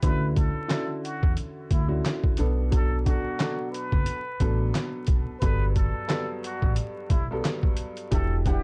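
Moody and gritty, this boom-bap hip-hop groove swings lightly on a compressed, pitched-down sampler-style kit, its thumpy kick, medium-tuned snare, hi-hat and handclaps sitting up front. A woody pizzicato upright bass and a dark, mellow upright piano, with audible action noise and a cassette-tape haze, carry the chords from Dmaj9 through Bm7 and Gmaj9 to Em9. Over them a plunger-muted trumpet plays a breathy, soft-attacked jazz solo with wah-wah colour, light vibrato, plate reverb and delay, set in a dry production dusted with vinyl crackle.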